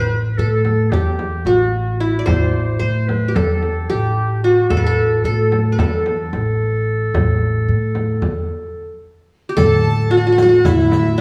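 A Turkish makam ensemble piece in makam huseyni on A, moving at 222 BPM in a straight 9/8 with a hypnotic, longing mood, heard in a fragment cut from a longer work. A fingerpicked qanun with bright-edged triple strings carries the melody up front over a woody pizzicato upright bass, while a classical-style clarinet plays a second line and a close, dry frame drum keeps time, the ensemble set in a moderate recital hall reverb. After a stop at 8.4 s, the music resumes at 9.6 s as a distant, reedy, gut-string violin section adds a second line, and a small clay-shell darbuka and a saturated riq with dark jingles join in the background.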